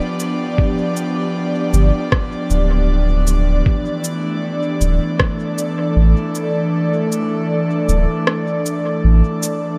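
Lightly reverberant and spacious, this deep ambient dub excerpt sets an airy, breathy pad's chorused sustained chords, moving from G7 to Dsus2 at 3.7 s, over a round warm sub bass entering at 1.7 s, an overdriven electronic shaker and rim click with dub echo, and a muffled, pitched-down, thumpy electronic kick drum that stops at 5.4 s.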